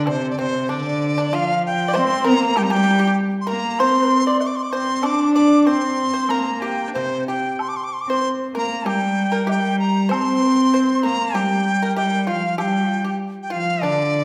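Heard from farther back in a recital hall with a long, wet reverb, this wistful, graceful Chinese chamber piece in the G yu mode moves at 96 BPM in 4/4 with a rubato feel. A bright bamboo dizi carries the melody up front, its buzzing membrane, crisp attack and vibrato set over a rich, reedy cello with an airy bow and gut-string tone that shapes a second line. A dry, percussive pipa played with fingerpicks adds another supporting line, while a very quiet, close woodblock adds percussion throughout this section cut from a longer piece.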